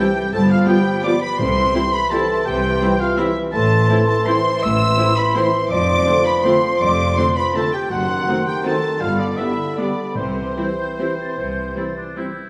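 This classical orchestral ballroom waltz in C major moves in a rubato 3/4 at 140 to 181 BPM, and this short portion of a longer piece has a festive, sweeping mood. A distant, intense violin section carries the melody in a clear, lush, vibrato-rich tone. Beneath it, a second violin section, a pure-toned flute section with rolled-off highs, a smooth mellow clarinet and a roomy oboe with light vibrato all weave supporting lines. A bright viola section and a solo bassoon supply the accompaniment, while soft-attack trombones and a distant horn section hold sustained chords in the background. Cellos and a rich double bass section anchor the bass from 0.3 seconds, and very quiet, articulate timpani struck with hard mallets sound a C at 1.4 and 10.1 seconds, all within a moderate scoring-stage reverb as the harmony passes through A minor and a diminished chord before resolving home.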